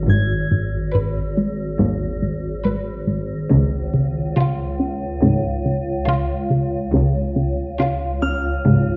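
A moderately reverberant recital-hall sound with dulled highs frames this eerie, tense suspense film-score excerpt at 70 BPM, where an up-front swarming, detuned granular drone and a punchy, wave-folded analog bass riff churn beneath a ringing fingerpicked harp, dark sul tasto cellos and pure, floating double basses, while a bowed chamber violin section with light vibrato enters at 0.9 seconds over a G#m to C# progression.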